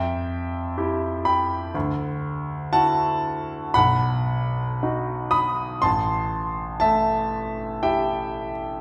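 A clear, intimate concert grand piano with audible action noise, deep bass and long sustain sits up front in a wet recital hall reverb, playing a hazy, dreamy impressionist classical passage in a slow, rubato 4/4 at 51-62 BPM, its chords drifting from Fsus2 through Dadd9 and B to Am7 across a brief 8.8-second cut from a longer piece.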